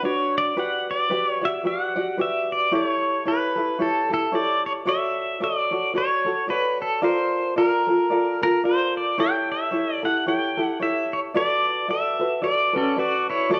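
An echo chamber reverb with a moderate two-second tail hangs around a small room's ambience, giving this short Hawaiian passage, cut from a longer piece, a relaxed, languid air. An electric pedal steel guitar carries the melody up front, its bright, clean, twangy tone compressed and shaped by fingerpicks, slide and volume swells. Beside it, also up front, a tenor ukulele supplies light, thumb-plucked acoustic accompaniment with a warm body. Both instruments play together from 0.0 to 13.6 seconds over an easy swung 4/4 lilt. The harmony drifts from Bm through Gmaj7, A7 and Dmaj7 to a colorful Bbmaj7, then returns through A7 to settle on D6.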